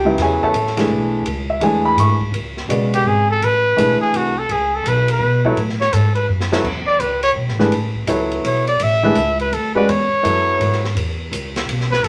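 Modal jazz in a swinging 3/4 with a spiritual, hypnotic mood, cut from a longer piece and opening on an Amaj9 chord from an intimate grand piano, whose action noise can be heard, over a woody, thumpy pizzicato upright bass. A swinging big-band drum kit with dark cymbals, a punchy kick and an airy, polished hall sound sits low in the mix, while a clear, close-miked trumpet with light vibrato enters up front at 2.9 seconds for a solo. A brief drum fill arrives at 6.3 seconds, the piano drops out at 10.8 seconds, and the whole is set in a wet club reverb.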